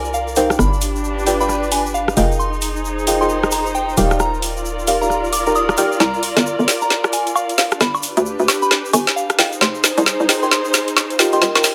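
A light reverb and digital ambience frame this bouncy, soulful piece of two-step UK garage, a short cut from a longer track in C minor at 133 BPM with a swung 16th-note feel. A hollow, knocking FM bass sits up front with punchy notes that attack fast and then decay, while deep, mellow chord stabs with a nasal, filtered pluck and chorus move through Cm7, G7, Fm11 and Ebmaj9. Above them a soft, pure synth bell carries the melody, its gentle FM tone spread by chorus and dub echo, and a dark studio string section adds close, bowed texture with vibrato and portamento. A grainy egg shaker runs quietly underneath from the start, and the layered garage drum kit enters at 0.4 seconds with a woody snare, metallic hats, rim clicks and woodblock, all placed up front. From 6.0 seconds the track moves into a build-up, with a drum fill running to the end at 11.7 seconds as the progression settles on Ebadd9.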